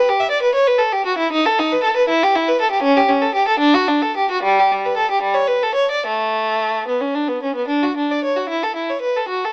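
A rich, focused solo violin sits close and up front, bowed by a single player with a singing vibrato as it moves between G3 and E5. The piece is a baroque-style suite movement for unaccompanied violin, flowing and radiant, with a lilting 6/8 metre shaped by a free, rubato feel. Cut from a longer piece, the fragment states its opening phrase and then returns to it at 7.7 seconds before breaking off at 9.5 seconds. A moderate stone-room reverb gives the line an airy halo. The sound carries the character of worn, warbling old cassette tape, with vinyl crackle, a wavering pitch drift and the narrow tone of a small speaker lending it a faded, nostalgic patina.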